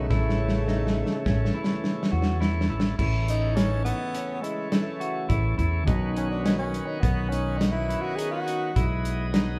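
Set in a straight 5/4 at 104 BPM, this bright, intricate progressive instrumental in A lydian opens with a soul drum kit playing a fill under a breathy tenor saxophone melody and a dark, distant trombone second line that stops at 2.4 s. From 3.0 s the saxophone takes a whispered, intimate jazz solo with vibrato until 8.9 s, over a shouting, lightly overdriven tonewheel organ with slow rotary speaker, picked arpeggios from a slightly broken-up, lo-fi electric guitar, and a punchy fingered bass, with chords moving from A to Badd9 to Emaj7/B. The drums sit up front with dark cymbals and a punchy kick, and the band plays live in one room with a moderate, large studio reverb.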